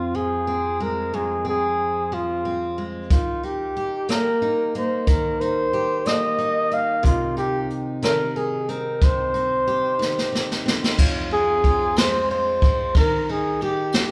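Dramatic and aching, this six-eight pop ballad moves slowly at 61 BPM in F minor, tuned slightly low to A4 = 437 Hz, and is cut from a longer piece. A breathy, mellow flugelhorn carries the melody in a jazz-style solo up front, its vibrato and scooped notes giving each phrase an aching quality. Beneath it, a warm, picked steel-string acoustic guitar supplies the accompaniment throughout, moving through F minor, E-flat and C minor chords. A jazz brush drum kit enters at 3.1 seconds with dark cymbals, a medium-tuned snare and a boomy kick, then plays a fill at 10.0 seconds that leads into a new section at 11.0 seconds. The whole performance sits in a moderate recital-hall reverb, lending it the spacious glow of a church or concert hall.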